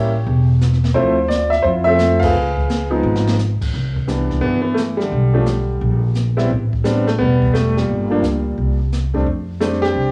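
A brisk swing at 173 BPM in 4/4 drives this short, playful jazz piano trio excerpt in C major, cut from a longer piece. A clear concert grand piano carries the melody from the first moment, sitting up front with deep bass and a natural tone, its sound touched by cassette tape and plate reverb. Beneath it, a pizzicato upright bass with steel strings gives a woody, growly line that is also up front, while a brush kit enters at 0.3 seconds with dark cymbals, a medium-tuned snare, a boomy kick and hi-hat, sitting lower in the mix and colored by cassette tape. The whole band hits an accent at 2.2 seconds, and a drum fill from 3.0 to 3.4 seconds leads into a new section at 3.7 seconds, where the harmony moves from dominant and ninth chords like A7, Dm9 and Db9 toward Cmaj9, Bm, Bb and A7sus2. The home cassette recording in a small booth-like room lends the trio an intimate, lo-fi closeness.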